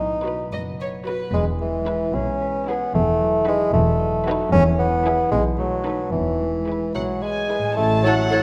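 Cinematic, whimsical film cue in E major, in 6/8 at 74 BPM, with a magical, mischievous air: an up-front bassoon carries the accompaniment over bright, ringing harp arpeggios, woody cellos and soft-attack double basses. Sul tasto violins hold an intimate melody in the background, darker violins trace a second line and violas fill the middle, all inside a reverberant concert hall. A dark tuba enters at 7.8 seconds as the harmony moves to A, and a clear oboe and pure flute join at 8.0 seconds.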